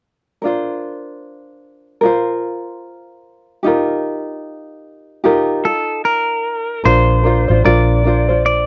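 Pop with a sunny, heartfelt mood and a gentle swung sixteenth-note feel, heard in a short cut from a longer piece: a mellow, fingerpicked tenor ukulele sits up front from the start, shifting between Bbadd9 and Ebadd9. A clean, twangy lap steel guitar with slide joins at 5.7 seconds to carry the melody, and a dark, round, foam-muted electric bass with a punchy, amped tone enters at 6.9 seconds. The close, dry 1970s-style studio sound carries a moderate small-room reverb.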